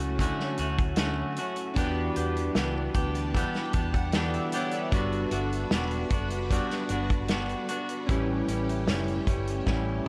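Lightly reverberant and sunny, this short, dreamy indie and bedroom pop clip sets an up-front, clean semi-hollow electric guitar with subtle chorus and vibrato over a dark, foam-muted fingered bass and a loose small-room drum kit with a punchy kick, while glossy chorused retro synth keys add a fill at 2.6 s and a lush vintage string machine holds sustained chords in the background through Dmaj7, Em7, Gmaj7 and A7 before a drum fill at 9.7 s.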